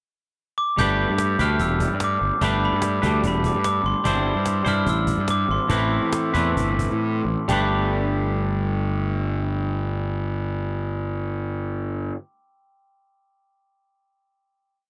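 Indie rock in G major and 4/4, a short, wistful and jangly piece that moves at 126-148 BPM, slowing from 4.0 s before settling on a final chord at 7.5 s. A bright, twangy clean guitar plays picked, ringing chords up front, while a growly, fuzz-overdriven fingered bass drives a syncopated riff and a snappy, close, dry cajon with snares supplies a big rock groove until 7.6 s. Above them a glockenspiel struck with soft plastic mallets adds a mellow, bell-like motif-based melody, and the whole mix sits in light reverb and studio ambience.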